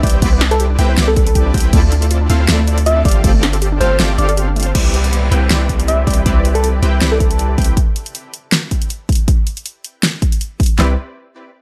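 A half-time future bass groove at 159 BPM in 4/4 drives this lush, euphoric fragment in C major, its 16ths carrying a light swing and two layered electronic pop kits supplying a punchy kick, fat snare, handclaps, bright hi-hats and crash cymbal, with the kick-and-snare kit up front. It opens straight into the drop, where a round, gentle FM lead with a keys-like character sings the melody through chorus, phaser, vibrato and dub echo. A detuned sawtooth supersaw stab plays the riff alongside, while a warbling, wave-folded unison pluck spins arpeggios in the background until 4.7 s. Beneath them a deep, mellow sine 808-style bass holds long decaying notes, and the bass and synth parts pump with sidechain under a chord cycle of Cmaj9, Dm9 and G9sus4. The kick drops out briefly before the second section at 4.8 s, where a filter sweeps over the 808 and a background downlifter falls from about 4.7 s. 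The melodic parts stop near 7.7 s, and the drums carry on before Cmaj9 returns at 10.8 s. The mix is dry and loud, with some lossy compression artefacts.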